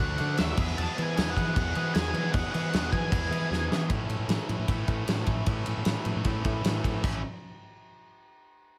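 Indie rock at 153 BPM in A major, upbeat yet wistful, cut from a longer piece: a dark, fuzzed lead guitar carries the melody with tape echo until 3.7 seconds, over a bright, biting, double-tracked overdriven guitar riff and a round, growling fingered bass with overdrive. A big acoustic drum kit sits up front with a fat snare, punchy kick, crash and ride in a large room, and a fill at 3.5 seconds leads the shift from D and Eadd9 to A at 3.9 seconds. A light reverb wraps the mix.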